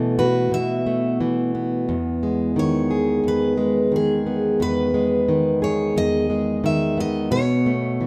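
A dark, full-bodied fingerpicked jumbo acoustic guitar sits up front beneath a warm picked dreadnought melody in this heartfelt, easy-going pop excerpt in E major at 88 BPM, moving from B7sus4 to Emaj7 and on to B7(no3) at 7.3 seconds, with light studio reverb and a rough home demo mix.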